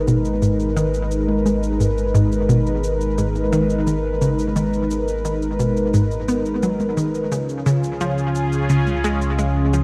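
Ambient, sequencer-driven space music at 87 BPM in G# dorian, mysterious and cosmic, cut from a longer piece, where a bright, evolving sawtooth pad with chorus holds sustained chords up front over a deep, dark square-and-sine bass, while a detuned analog pluck riff with chorus and tape echo and tape-warm electronic cabasa and toms with tape echo enter at 0.1 s, all moving from G#madd9 to C# at 7.3 s in a dreamy cassette mix soaked in lush hall reverb.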